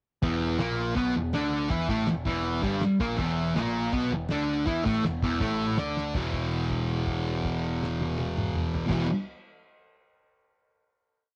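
From the first moment, a thick fuzz guitar plays a swaggering octave riff on an E5 chord, bright, double-tracked and up front, its distortion coloured by cassette tape. Underneath, a growling picked bass, overdriven and direct, enters at the same moment and drives eighth notes in the background while doubling the guitar riff. A cloth-damped drum kit also starts together with them, thudding along with a fat snare, tight kick, toms and dark cymbals, its rolled-off top carrying a cassette tint as it sits behind the strings in a big rock groove. This raw garage rock number runs as a short whole piece, with the riff holding until a drum fill at 6.0 seconds ushers in a final chord at 6.1 seconds. A held note rings out to 8.9 seconds in light reverb and a homespun studio ambience.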